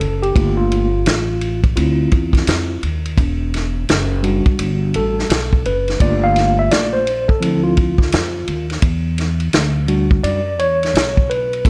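A mellow tine electric piano takes the solo across the full 11.7 seconds of this nocturnal, smoky jazz-hop cut from a longer piece, sounding clean through its built-in speakers over Gm9, Dm9 and Em9 chords, while a woody, thumpy pizzicato upright bass on gut strings and a vintage drum kit with punchy kick, medium-tuned snare, hi-hat and ride cymbal, its top rolled off and roughened by 12-bit sampler grit, sit up front alongside the piano throughout in a swung hip hop groove set in studio reverb.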